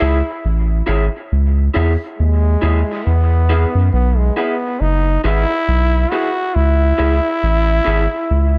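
A growling trombone carries a raspy, vibrato-laden melody with dub echo over a deep, round sub bass and a slightly broken-up, lo-fi electric guitar shimmering with lush chorus, in a hazy, spacious reggae excerpt at 69 BPM with a 16th-note swing that moves from C#m to E and back, the guitar dropping out at 8.0 seconds in a small room.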